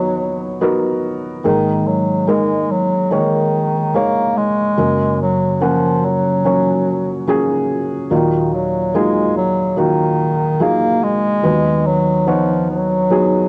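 A breathy bass clarinet carries the melody up front, singing in a jazz-inflected solo voice with a gentle vibrato and staying within a low, narrow range from Eb3 to Bb3. Alongside it, a felt-muted upright piano, also up front, offers soft, mellow accompaniment, its thick felt giving an intimate, close-up tone set in a touch of plate reverb. This heartbroken, melancholic pop fragment in Eb minor moves at a slow 72 BPM in a straight 4/4, with both instruments present for the full 13.5 seconds. The harmony drifts from B/D# through Absus2, Gb and Ebmadd9 before returning to B/D# at 11.4 seconds. A cassette-tape character colors both parts, and the home recording sits in a modest booth ambience with a dulled, rolled-off top end that adds to its warm, worn feel.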